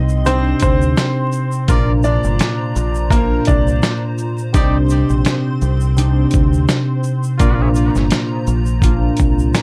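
A dusty, sampler-style boom-bap kit with a thumpy kick, medium-tuned snare, hi-hat and shaker sits up front at 84 BPM with a light 16th-note swing, alongside a grainy egg shaker in the background and a round, dark dub bass in C minor, moving between Cmadd9 and Bb. A ringing, thumb-plucked concert harp and a hollow, flute-like pad with ensemble chorus fill out the harmony, while a worn, woody, slightly detuned upright piano carries the melody through delay until 4.0 s. A smooth trumpet section with light vibrato adds delayed stabs from 1.7 s to 7.7 s, all under vinyl crackle and light reverb in this gritty, moody fragment from a longer piece.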